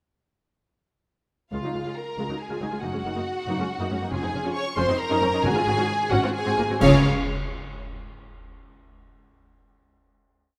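Cheerful and graceful, this short, complete piece is a fast romantic movement for symphony orchestra in 3/4, moving at 127-141 BPM in Db major. From 1.5 s the violin section carries the melody with a lush, singing vibrato and soft attack, while a second, closer and more focused violin section sits up front, doubling the tune at the octave and in thirds. Violas drive a rhythmic ostinato and hold sustained chords with expressive portamento, and the cellos anchor the harmony with a driving bass ostinato, doubled in the background by a clear, even double bass section. Round, soft-mallet timpani strokes mark bass notes at the opening and again toward the close, and from 4.1 s dark cymbal swells, crashes and concert bass drum strokes add color as the harmony moves through Ebm7 and Ab7 toward home. The ensemble lands together on an accented final Db chord at 6.8 s, which rings out in a generous scoring-stage reverb.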